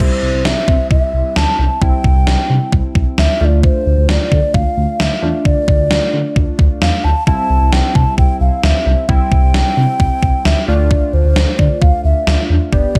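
A straight 4/4 pulse from an up-front, overdriven 80s drum machine, with a thumpy kick, gated-reverb snare and crash cymbal, drives this bright, upbeat synth-pop excerpt, where a breathy, hollow clay ocarina sings the melody through delay over detuned, chorused analog keys and a smooth, nasal synth bass, while the harmony alternates between C and Dm in light reverb.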